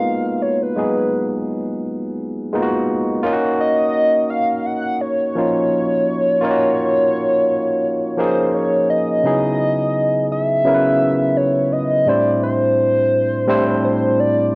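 A home cassette recording bathed in moderate spring reverb carries this introspective, soulful R&B fragment at 85 BPM with a gentle 16th-note swing, where a hollow, detuned square-wave lead with chorus and vibrato sings the melody up front over a barky, clean tine electric piano played through a combo amp, moving from G#m9 and D#m9 to C#m11 at 9.2 seconds and on to Am7.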